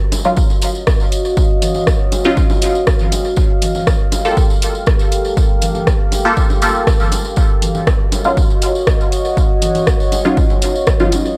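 A punchy, up-front electronic kick anchors this hypnotic, nocturnal dub techno excerpt alongside a muted, detuned chord stab steeped in chorus, phaser, tape grit and dub echo, a deep, moody pad that sustains Ebm9 and Gm9 harmonies under reverb and sidechain pumping, punchy hi-hat and rim clicks from an analog drum machine, overdriven bongos and congas set back in a large room, and a close, jingly tambourine, all within a light digital ambience.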